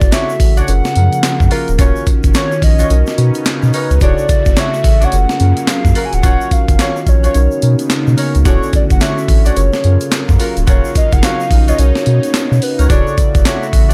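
Flirty and upbeat, this short new jack swing cut from a longer R&B piece moves at 108 BPM in 4/4 with a swung sixteenth-note feel, cycling through Dmaj7, F#maj7, D#m9 and Bmaj9. A hollow, woody, clarinet-like synth lead carries the melody with vibrato, its tone thickened by chorus and phaser. Beneath it, a mellow tine electric piano supplies accompaniment while a swirling, detuned analog pad holds sustained chords through its own phaser and chorus. A round, deep sub bass and a gritty, compressed breakbeat-style kit sit up front, the kit's thumpy kick, snare, hi-hat, handclaps and tambourine dressed in gated reverb, with a grainy egg shaker tucked in the background. A smooth-topped horn section joins at 0.1 seconds with jazz-style stabs in octave doubling, and the overall mix stays dry and close.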